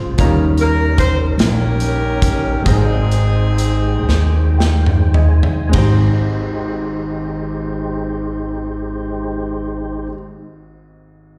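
Heard through a venue's PA with recital-hall reverb, this short live excerpt of slow gospel in Ab major sways in 6/8 at 33-51 BPM, reverent and soulful, moving from Eb7 to Abmaj7 as the tempo slows from 0.2 to 5.7 seconds. A clear saxophone section carries the melody until 4.6 seconds, dressed in plate reverb, slapback and tape echo, over a natural concert grand piano with deep bass and short sustain, a mellow, dark tonewheel organ holding sustained chords through a fast rotary speaker and chorus vibrato, and a woody pizzicato upright bass sitting up front. A tight, small-room drum kit enters at 0.2 seconds, and from 4.1 to 5.7 seconds the drums, piano and organ all play fills before the music opens into a new section at 5.7 seconds.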